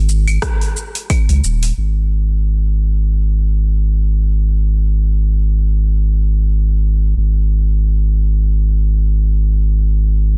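A deep, round sine sub bass sits up front through this hypnotic, warm organic downtempo excerpt in free time, joined only from 0.1 to 1.7 seconds by a deep house kit of claves, metallic hi-hats, rim click and shaker and, from 0.4 s, by a punchy, up-front electronic kick, both overdriven, before the sustained bass carries on alone in digital ambience under a dense, heavily limited modern master.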